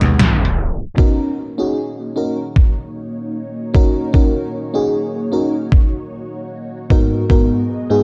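Hazy and melancholic, this vaporwave excerpt drifts at 76 BPM with a gentle 16th-note swing, opening on G#m7 as a thick, detuned sawtooth pad with 12-bit sampler grit holds chords under chorus and phaser, while a punchy, foam-muted thumbed slap bass and an overdriven, detuned 8-bit drum machine of congas, hi-hat and snare hit a brief band accent through a tape stop. From 0.6 seconds a dreamy, mellow FM electric piano with a soft pad layer, subtle chorus and analog delay enters beside a thumpy, overdriven electronic kick up front, and at 1.0 seconds the harmony moves to D#m7 as a filter sweep runs across the synth pad. Light reverb and cassette tape colouring lend the mix a worn, faded sheen.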